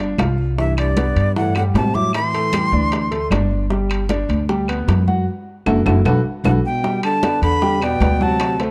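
A bright, breathy jazz flute leads this danceable, sophisticated Afro-Cuban jazz passage in G major at 153 BPM, its crisp, chiffy attack and vibrato sitting up front, with a mellow, whispered trombone playing a second line from a distance; both play from 0.6 to 3.3 seconds and return at 6.5 seconds. A woody pizzicato upright bass with steel strings anchors the bottom up front, while a clear baby grand piano comps with an intimate touch and audible action noise through chords such as Cmaj13, Am7 and Dsus2 before moving to F#m7 and Em7. Ringing metal-shell timbales in a live room round out the percussion, joined in the background by tight, high-tuned bongos, medium-tuned congas and compressed, saturated claves. A drum fill and band accent arrive between 5.3 and 6.8 seconds, leading into a new section. The production is dark with light reverb, and the passage is cut from a longer piece.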